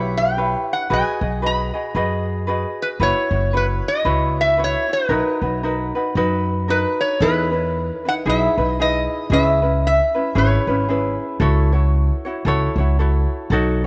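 Relaxed and sunny, this Hawaiian excerpt sways at 114 BPM in 4/4 with a gentle swing, moving from B major to E major at 7.2 s over lush chords like Bmaj7, Emaj7 and C#m7, with a moderate plate reverb around the parts. A metal-body resonator slide guitar, played with fingerpicks, carries the melody from 0.2 to 11.2 s in a metallic, nasal voice, while a bright, light ukulele is fingerpicked in accompaniment. Underneath, a woody, thumpy upright bass with steel strings is plucked pizzicato, and all three sit up front in the mix.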